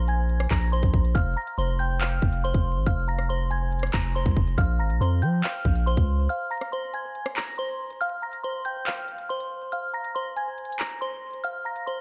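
A half-time drill groove of hard-clipped kick, crisp hi-hat, handclaps and rim click drives this tense, menacing hip hop excerpt, as a deep sine 808-style bass holds long decaying notes until it drops out at 6.3 s, leaving the drums and the glassy, warbling FM synth bell, treated with chorus, low-pass filtering and analog delay, to carry its vintage-tinged melody over Bbsus2 and Fm chords through light reverb and a bed of vinyl crackle.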